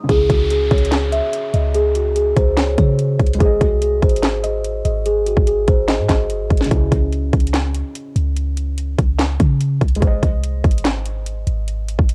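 Hard-hitting and menacing, this half-time trap excerpt opens with a woody, hollow-toned kalimba melody carrying cassette-tape colouring, which drops out at 6.7 seconds while a felt-muted upright piano offers soft, vintage-tinged accompaniment under a C# minor to G# progression. Up front, an electronic trap kit with a hard-clipped kick, sharp snare, metallic hi-hats and handclaps, also tape-coloured, drives alongside a deep, boomy sine 808 bass with a fast attack and decaying tail. A faint electronic downlifter sits beneath the opening 3.4 seconds, and the dry, home-recorded sound keeps everything close.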